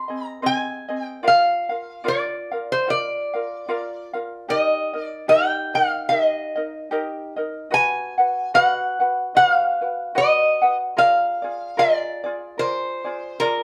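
Dreamy and sunny, this Hawaiian excerpt sways with a lilting swing, a lap resonator guitar carrying the melody up front with a metallic, nasal slide tone picked out with fingerpicks. A light, thumb-plucked ukulele supplies bright accompaniment throughout, close by in the same studio room with moderate reverb. The harmony drifts from Ab through Bb, Eb and B before settling on Bb7 near 11.0 seconds.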